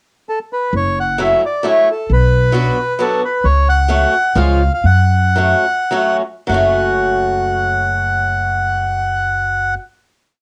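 A reedy, dark bandoneon leads this brief, bittersweet musette waltz in F# minor with a motif-based melody in period phrases, joined at 0.7 s by a woody, thumpy pizzicato upright bass on root and fifth and at 1.2 s by a boxy picked swing-style acoustic guitar with a cassette tint playing close-voiced backbeat chords, slowing from 3.4 s before settling on a final chord in a small room with a nostalgic home-recorded feel.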